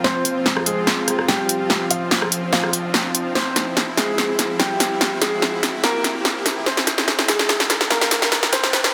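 Heavy and menacing, this brief heavy wobble dubstep build-up at 145 BPM in a half-time 4/4 feel sits in F harmonic minor, with a clear baby grand piano carrying the melody through a low-pass filter and digital delay over lush, detuned supersaw pad chords, while a punchy, up-front big-room dance drum kit of crisp hi-hats, rim clicks and snare plays a fill throughout, a very quiet electronic riser enters at 0.4 s, and a moderate hall reverb and dense, heavily limited master frame the build.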